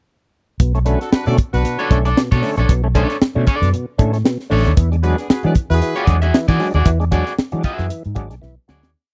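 Funk groove at 115 BPM in B dorian, sly and cool, with a swung sixteenth feel over Bm9 moving to E9, as a tight, high-tuned snare and tight kick lay down a syncopated pattern with ghost notes beside a dark, foam-muted fingered bass riff anchored on the downbeat, with muted ghost notes and chromatic approach notes. A gritty, overdriven tonewheel organ with key click, chorus vibrato and slow rotary speaker punches out percussive stabs. A slightly broken-up, twangy guitar enters at 1.8 seconds with clipped chords, and a distant, roomy horn section adds short riffs in two brief bursts, all in a dry, close 1970s-style sound before a fade-out from 6.9 seconds and a closing drum fill.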